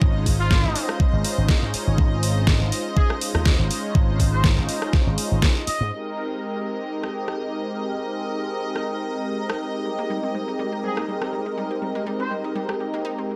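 A growly, punchy slap bass run through an envelope filter drives this sunny, groovy nu-disco excerpt, sitting beside a knocking, overdriven electronic kick that is placed up front, with the kick dropping out around 5.5 seconds and the bass around 5.9 seconds. A smooth, detuned sawtooth pad with chorus, cassette-tape character and dub echo pumps against the beat throughout, while a floating, bowed string section holds soft chords beneath a low-pass filter. An overdriven pop drum kit with a deep snare, hi-hat and rim click carries the swung sixteenth-note feel, its layered electronic sound re-recorded in a small room. A tight, clear trumpet section with light vibrato and tape echo states the melody, returning briefly near 10.8 seconds. A round analog pluck with a noise layer and fast attack adds chorused arpeggios toward the end, all under a light reverb.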